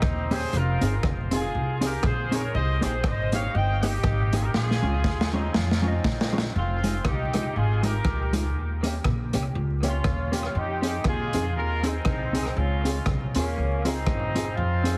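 A mellow horn section, upright bass and raw garage drum kit open this energetic, mischievous ska excerpt together at 120 BPM in F minor, swung on the eighths, with a dark, clean electric guitar joining at 0.3 seconds. The horns carry the melody with light vibrato and a vintage ensemble tone, their phrases trailed by dub echo. Underneath, the pizzicato upright bass sounds woody on steel strings, while the drums sit up front with a punchy kick, medium-tuned snare, rim click and hi-hat, saturated and gritty in a small pumping room and also sent through dub echo. The fingered, compressed guitar fills out the chords of Fm7, Cm7, Bbm7, Eb7 and Dbmaj7 through a spring reverb, and a drum fill from 4.5 to 6.5 seconds leads into the second section. The whole mix has a heavily compressed radio quality with vinyl crackle and light reverb, and the piece is cut from a longer performance.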